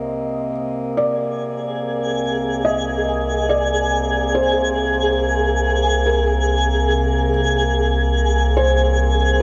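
Serene and reflective, this short ambient fragment is cut from a longer piece and rests on a single Cm7 chord. A deep, ominous drone fades in at the bottom, its dark triangle-and-sawtooth tone shaped by a slow attack, long release, its own reverb and a phaser, sitting up front. A pedal harmonium holds a reedy, breathing drone in the middle register. Above them, a felt-muted upright piano carries a soft, intimate melody in a narrow range, its thick felt, audible action noise and vintage character haloed by shimmer reverb and a diffuse ambient delay. From 1.6 seconds a twinkling granular texture joins up front, sparkling with an octave-up shimmer and FM tones that bloom slowly and linger. The piece is bathed in a cavernous cathedral reverb and the gentle wear of cassette tape.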